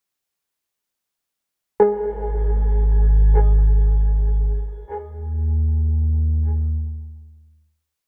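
In free time, this short, reflective and melancholic ambient piece opens at 1.8 s with a gentle, round synth pluck playing one slow arpeggio loop around G#4, bathed in lush chorus, diffuse delay and shimmer reverb, until it stops at 4.9 s, while a deep, sustained analog bass holds the roots between G#1 and D#2 until 7.9 s as the piece fades out, all within a dark production with light reverb.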